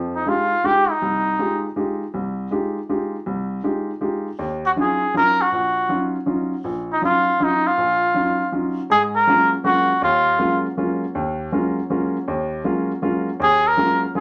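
Spiritual and cool, this short jazz waltz cut from a longer piece swings in 3/4 at 160 BPM, with a baby grand piano of warm, natural, short-sustained tone accompanying through the whole passage over Fm9, Ebm9 and G#13sus4 harmonies. Up front, a soft, veiled cup-muted trumpet carries the melody in brief solo phrases, entering at 0.2 seconds, returning at 4.7 seconds for its longest statement and coming back at 13.4 seconds. A wet studio ambience surrounds the pair.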